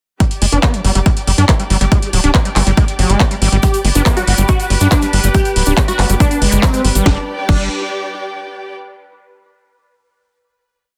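Psychedelic trance at 140 BPM in G major, hypnotic and driving, where a punchy four-on-the-floor kick, cracking snare, claps and metallic hats, a galloping sixteenth-note sequencer bass, a squelchy distorted acid line with accents, slides and a filter sweep, lush bowed strings, a very quiet nasal wobble bass in short answering phrases, a grainy hand-played shaker, a bubbling stepped-filter high note and an airy supersaw stab riff entering at 3.6 seconds all sit in a dense, dry, heavily limited mix before the strings hold a final chord from 7.1 seconds.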